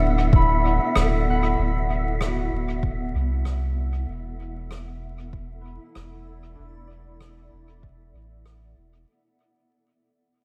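A blurred, evolving granular cloud pad, fingerpicked concert harp arpeggios with a low-pass filter and dub echo, a deep, round sub bass and a breathy, wind-like tuned noise texture open this hazy, spacious ambient dub fragment at 96 BPM with a 16th-note swing, joined at 0.3 seconds by a punchy, up-front electronic kick and at 1.0 seconds by a distant, roomy rim click with dub echo, as the harmony moves from D7 to E5 at 4.1 seconds over vinyl crackle, light reverb and studio ambience while the whole clip fades out.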